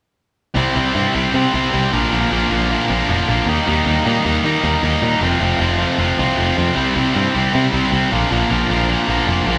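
A moderate reverb from a large studio surrounds this live-sounding take, captured with the band playing together in one room. It is a short punk passage cut from a longer piece, moving at a straight 155 BPM in 4/4 with an upbeat, rebellious energy, tuned slightly under standard pitch to A4 = 439 Hz. Two overdriven electric guitars sit up front playing riffs, both bright and picked, one reaching from F2 to Eb4 and the other a touch higher, from Bb2 to F4. A picked electric bass enters at 0.6 s with a direct, growly, punchy tone, covering the low end from F1 to Eb3. The chords run C, Bb, Eb and F before returning to C and Bb, and all three parts play through to 9.6 s.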